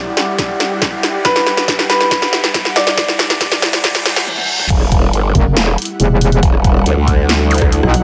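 At a half-time 139 BPM in E minor, this aggressive, chaotic heavy wobble dubstep excerpt opens on an Emadd9 build-up where a bright baby grand piano melody with digital delay and audible action noise floats over a lush, very quiet supersaw pad, an ethereal phased pad with sidechain pumping, and a riser, reverse cymbal and zap, as a big-room dance kit with punchy snare fills and a knocking electronic kick push toward the drop at 4.7 seconds, where a saturated, formant-filtered growl bass comes in, joined at 5.3 seconds by a metallic FM wobble bass, both chorused and up front.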